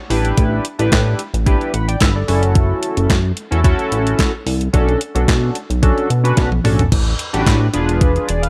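An overdriven, clean 12-bit digital drum machine sits up front in this slick, late-night early-eighties boogie funk excerpt at 110 BPM in 4/4, its thumpy kick, medium-tuned snare, handclaps, hi-hat, toms and crash cymbal running from 0.1 to 8.5 seconds with a drum fill at 6.4 seconds. Alongside it a glossy chorused synth bass, built from pulse-width-modulated and ring-modulated waves with a filter pluck, moves through A9sus4, F#m7 and Bm9. From the start, a mellow, evolving chorused polysynth with detuned, wave-folded and sub-octave tones fills out the harmony, and the passage turns to A13sus4 and E7b9 at 6.9 seconds, all set in a digital ambience.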